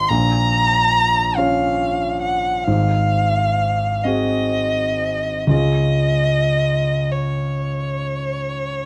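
Romantic classical duo for violin and grand piano in D-flat major, this brief fragment from a longer piece unfolds in a slow, rubato 12/8 at roughly 36-48 BPM in dotted quarters, with a tender, lyrical mood. The single bowed violin sings the melody up front, expressive and smooth on top with vibrato and portamento, while the grand piano accompanies up front with an intimate, natural tone, long sustain and audible action noise, moving from Bbm through Ab7 to Db. Both instruments play throughout the 8.9 seconds, set in a moderate large-studio reverb with a dark, warm production.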